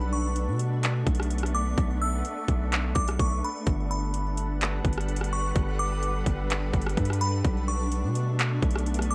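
A half-time trap groove in 4/4 drives this short cut from a longer atmospheric cloud-rap track, with an overdriven electronic kit of hard-clipped kick, metallic hi-hats, handclaps and rim clicks arriving at 0.4 seconds, up front and roughed up by a small-room re-recording. Beneath it, a deep, long 808-style bass with a sine tone, a fast attack and a decaying envelope sits equally forward from the very start. A shimmering ambient pad holds sustained chords throughout, its wave-folded, granular texture lifted by an octave-up shimmer, chorus and built-in reverb as the harmony moves from Bm11 to Gmaj7 and back to Bm11. From 0.1 seconds a delicate, tinkling FM synth bell carries the melody high in the register, bright and dressed in chorus, phaser, tremolo and delay. In the background, a dark, breathy wind-like noise layer drifts with its own reverb, while light digital ambience wraps the mix in a melancholic, ethereal mood.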